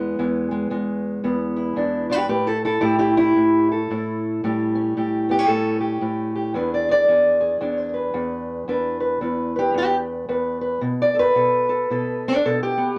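Swung eighth notes in a steady four-four give this acoustic country blues a loping, unhurried gait. A single fingerpicked steel-string acoustic guitar carries the whole piece, its dark, boxy parlour tone sitting up front in the mix. The mood is gritty and soulful, with the guitar ranging from low bass notes up into its higher register. The harmony moves from E7 to A7 at 2.3 seconds, back to E7, and then to Bm7 at 10.8 seconds. Light reverb and a dusky production surround the instrument, and the passage breaks off at 13.0 seconds as a fragment of a longer performance.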